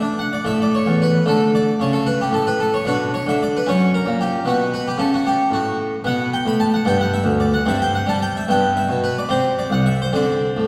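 A lilting 6/8 at 74 beats per minute, taken with a flexible rubato, gives this short passage from a baroque-style suite movement its dance-like, radiant character, settling into G major from 6.0 seconds. A solo harpsichord in the Flemish style, tuned slightly below modern pitch, carries everything from its deep bass to its upper treble, its close, plucked tone sounding full and brilliant with three sets of strings up front. Around it, a concert hall's reverberant bloom lingers after each chord as the harmony moves from B minor through a rich G major ninth before ending on a bare open fifth at 10.1 seconds.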